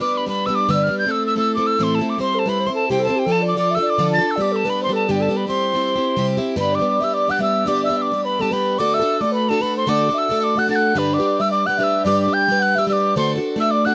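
Lively and bright, this Celtic reel runs at 219 BPM in 4/4 with a swung eighth-note feel, moving from C major into G major at 6.6 seconds. A hollow wooden whistle carries the melody up front, airy and close, with tongued notes, a soft chiff and a touch of vibrato. Beneath it, a picked twelve-string acoustic guitar, plugged in and also up front, supplies the accompaniment with a boxy, parlour-sized body and a shimmering octave-doubled ring from fresh strings. At 2.2 seconds a mellow baroque flute joins with a pure, tongued second line, sitting a little lower in the mix with its own vibrato. Light reverb and detailed close microphones keep the sound intimate, and the passage is cut from a longer piece.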